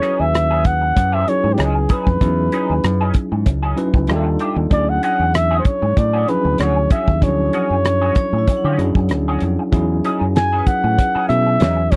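A damped 1970s-style drum kit sets a lightly swung sixteenth-note groove in 4/4, its fat snare, tight kick, rim clicks and hi-hat sitting dry and up front, while a fingered electric bass plays a bright, direct line just under it. This is lush, smooth 1970s soul, cut from a longer piece, with a dry, close studio sound carrying little reverb. A breathy flugelhorn takes the solo melody in a mellow jazz style, close-miked and prominent, scooping into its notes. Beneath it, a worn, slightly out-of-tune tine electric piano comps through its built-in speakers, and an electric guitar through a small old amp repeats a compressed, lo-fi riff, slightly broken-up and colored by wah and ensemble chorus. A metallic vibraphone struck with hard mallets rings softly in the background with a slow motor vibrato, dropping out at 1.9 seconds and returning at 8.2. The harmony glides from Emaj13 through D#maj9#11 and Dmaj9#11 before settling back on Emaj13, giving the groove a warm, smooth feel.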